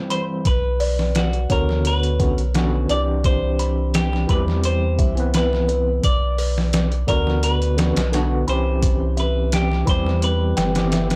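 Up front, a pitched-down, muffled sampler-style trip hop drum kit thumps through overdrive at 86 BPM in 4/4, joined at 0.5 seconds by a round, deep sine sub bass with tube saturation, setting a brooding, smoky mood over chords moving between Bmadd9 and Cmaj7. A barky overdriven tine electric piano with tremolo and tape echo carries the accompaniment, while a clean, picked semi-hollow electric guitar plays the melody through dub echo and vintage 12-bit sampler grit. Tucked in the background, a delicate, tinkling music box spins arpeggios with tape echo, all captured in a dry, gritty hardware recording cut from a longer piece.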